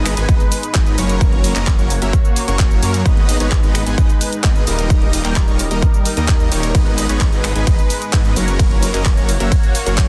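This festival progressive house excerpt opens at once with a lush, slow-blooming pad holding sustained chords in the background, a huge supersaw lead playing an airy, euphoric riff, and a thick detuned saw bass underneath, all three breathing with sidechain pumping. A pop drum kit of finger snaps, handclaps, hi-hat, ride cymbal and shaker joins at 0.1 seconds, and a punchy, overdriven electronic kick arrives up front at 0.3 seconds. The lead is bright and detuned with a noise layer and dub echo, while the pad shimmers through chorus and phaser over a square-wave sub octave, and the bass carries a sine core beneath its chorused saw. Over a cycle of G#m, F#, G#m and D#, the mood feels emotional and anthemic. The mix is dry and dense, with a heavily limited modern master and the kick sitting up front.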